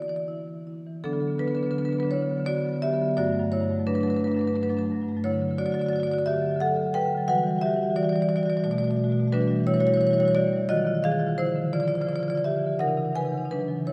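A solo marimba played with medium mallets opens on a Dsus2 chord, its warm tone sitting up front within a lingering church reverb that places the listener further back in the room. This flowing, reflective contemporary classical piece in D major moves in an unhurried 3/4 at around 87 BPM, with rubato lending the beats an uneven, breathing feel as the marimba ranges from G2 to G#5. From 1.0 seconds the harmony drifts through rich chords such as Gmaj9, Em9 and Bm7 before darkening toward D#madd9, Dmadd9 and finally C#m9 as the passage is cut off at 13.9 seconds.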